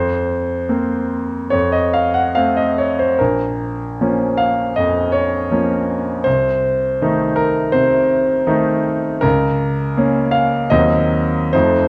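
A bright, brilliant concert grand piano with a deep bass plays up front, alone, in this stormy, passionate romantic character piece in Bb minor, moving with free rubato at roughly 68-85 BPM in 4/4 from a suspended F chord to F and on through Bb minor and darker diminished harmonies, all set in a moderate recital hall reverb and coloured by the warbly pitch drift of worn old cassette tape in a short passage cut from a longer work.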